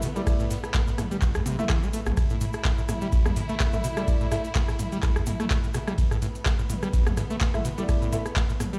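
A squelchy, resonant sawtooth acid bass drives this trippy 126 BPM acid house excerpt with overdrive, tape grit and delay, pumping against a deep, up-front electronic kick that enters at 0.3 seconds, lush bowed symphonic strings holding A5 chords, an analog drum machine with metallic hats, handclaps, ride, rim click and toms, warm grand piano stabs with delay, a very quiet natural kit playing hi-hat and snare, and a grainy cabasa in the background, all set in a bare room's large reverb.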